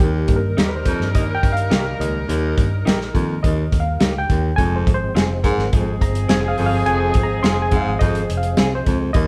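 Heard as a live band in a moderate stone room, this urgent, passionate fragment of 1960s-style soul features a barky, lightly overdriven reed electric piano with fast tremolo taking the solo over a punchy baritone saxophone riff, a round, foam-muted fingered bass, an up-front soul drum kit of hi-hat, kick and snare, and a vibrato-tinged horn section playing a second line, while a lo-fi guitar adds slightly broken-up stabs from 0.6 s and a very quiet tonewheel organ with key click and slow rotary speaker brings in sustained chords at 4.6 s as the harmony moves from Eb to Fm.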